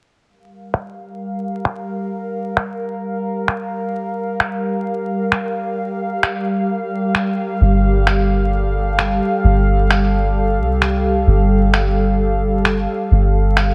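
A swung 16th-note groove at 131 BPM in 4/4 drives this nocturnal, ghostly future garage excerpt in G minor, carried by muffled, pitched-down electronic finger snaps that sit up front with a compressed, sampler-style character, a low-pass filter on the snare and a filter sweep running across the drums. From 0.7 seconds, alongside the snaps, a warbling, detuned pad holds sustained chords over a Gm7 harmony, its sawtooth and triangle tones softened by a slow attack, long release, chorus, built-in reverb and a nostalgic 12-bit sampler grit. At 7.6 seconds the harmony shifts to Fadd9/G as a soft 808-style bass enters, deep and round with a sine-like, decaying tone, a fast attack and a touch of tube saturation. The bass sits a little louder than the mellow pad and snaps. Vinyl crackle, light reverb and digital ambience give the whole piece a hazy atmosphere until it is cut off at 13.7 seconds.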